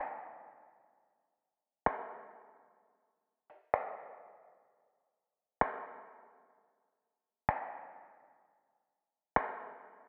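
The recording sounds worn and warbling, like old cassette tape, with a drifting pitch, a low-pass filter dulling the top end, and a lush, wet hall reverb that spreads a digital ambience around it. This short hip hop fragment, cut from a longer piece, moves in free time and carries a floating, blissful mood. The opening stretch, up to 4.7 seconds, is a break. The only instrument is an electronic trap drum kit, which enters at 1.9 seconds with finger snaps and metallic hi-hats. The kit sits up front and has a produced sheen, and it plays until 9.5 seconds before the fragment closes at 10.1 seconds.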